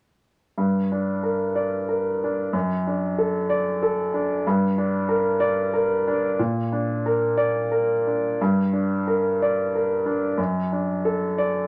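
A clear, woody upright piano plays alone from 0.6 seconds, up front with long sustain and a vintage smoothness, tracing a melancholic, intimate neoclassical minimalist line in a rubato 3/4 through moderate studio reverb, its harmony circling between G minor and D over F sharp with a turn to B flat before a second section begins at 8.4 seconds, in this brief cut from a longer piece that closes at 11.7 seconds.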